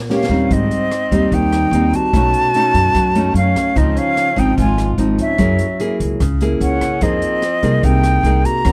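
Breezy and romantic, this bossa nova excerpt opens with a brief drum fill before settling into a straight feel over rich jazz chords. An airy concert flute with soft-attacked vibrato carries the melody up front beside a fingerpicked classical nylon-string guitar, its finger squeaks audible, while a dark bowed viola adds a quieter second line and a thumpy gut-string upright bass, plucked pizzicato, enters at 0.3 seconds. The open jazz kit, with its small-room sound, high-tuned snare, boomy kick, hi-hat and rim click, sits lower in a dry, close 1970s-style studio recording.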